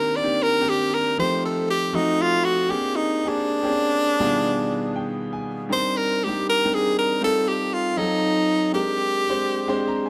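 Silky and smooth, this brief soul excerpt moves at an unhurried 79 BPM in straight 4/4, set in C minor with tuning at A4 = 439 Hz. A breathy tenor saxophone carries the melody throughout, close-miked and up front, its clear jazz-style tone shaded with vibrato as it ranges from D4 to D5. Beneath it, a concert grand piano supplies the accompaniment with an intimate, boxy character, deep bass and long sustain, its action noise audible up close. The harmony cycles through rich extended chords, Cm9 to F9, F7b9 and Bb13, turning on a G7b9b13/B before returning to Cm9. The piano steps forward with short fills at 4.6 and 9.5 seconds. A moderate plate reverb with a 3.0-second tail wraps the performance in a soft, glossy space.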